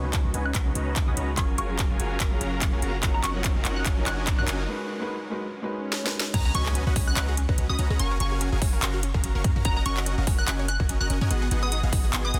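A bittersweet, dreamy future bass excerpt in half-time at 145 BPM opens with a glassy wavetable pluck melody, a soft felt-muted upright piano with audible action noise, and a very quiet, biting symphonic string section, all over a chord cycle that moves from Db9sus4 through Gbmaj9 and Ebm7/Gb to Abm7. A huge, thick detuned supersaw riff and a deep, boomy 808-style bass run throughout, both pumping against the punchy, up-front electronic kick, while a trap kit adds a sharp snare, metallic hats, handclaps and crash cymbal with a swung 16th-note feel. The opening build-up brings filter sweeps on the supersaw and the pluck, drum fills, and a brief break once the strings stop at 4.7 seconds, with an electronic swell rising into the drop. At 6.3 seconds the piano falls away, an impact lands, and a lush, wave-folded unison pluck enters in the background with arpeggios coloured by phaser and dub echo. 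The crystalline, warbling lead carries on with chorus and dub echo across a dense, heavily limited master with light reverb.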